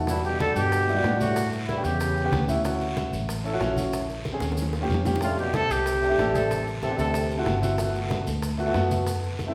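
A dark, woody upright piano and a round, foam-muted electric bass open this sunny, sophisticated Afro-Cuban jazz excerpt, joined at 0.1 s by tight, high-tuned bongos, soft, low-tuned congas, a raspy guiro and grainy maracas, while a mellow, soft-attack trumpet carries the melody over a trombone second line with light vibrato in two short phrases, the second returning at 5.2 s after a drum fill at 4.4 s, the group set in a reverberant recital hall over lush extended jazz chords.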